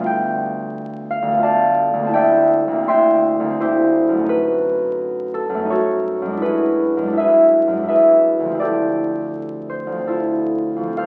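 A graceful, dreamy classical piece for solo concert harp in 3/4, moving with rubato between 65 and 89 BPM and tuned slightly below standard pitch at A4 = 439 Hz. The thumb-plucked harp sits up front with a ringing, warm tone across a range from D2 to C6, drifting through chords such as Dm6, F#m6 and E9/F# before settling on Dm11 at 8.6 seconds. The sound is bathed in a wet recital hall reverb and carries the crackle of a very old 78 rpm record, and the 11.1-second passage is cut from a longer piece.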